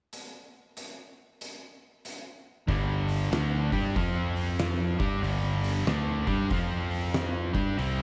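A heavy, smoky blues rock and southern rock fragment opens with an oversized, low-tuned drum kit playing alone, its punchy kick, fat snare and hi-hat ringing in a bright stone room that pumps around the gritty, saturated hits. At 2.7 seconds a double-tracked, distorted electric guitar enters with a picked riff, scooped and compressed, alongside a growling fingered electric bass that sounds direct and amped, overdriven and punchy. The riff moves between G5 and F5 power chords at 94 BPM in 4/4 with a swung eighth-note feel. All three parts sit up front in a dry mix, and the passage is cut from a longer piece, ending at 8.0 seconds.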